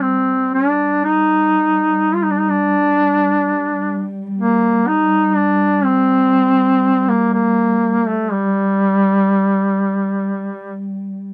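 Caucasian folk lament in a free, rubato 3/4, longing and solemn in mood. A warm solo duduk sits up front yet sounds distant and roomy, singing the melody with vibrato and scooped notes, while a dark, woody chamber cello section holds a bowed sul tasto drone with its own vibrato until 11.3 seconds, just after the duduk stops at 10.9 seconds. This short excerpt has the dry, close sound of a 1970s-style studio recording with a light touch of reverb.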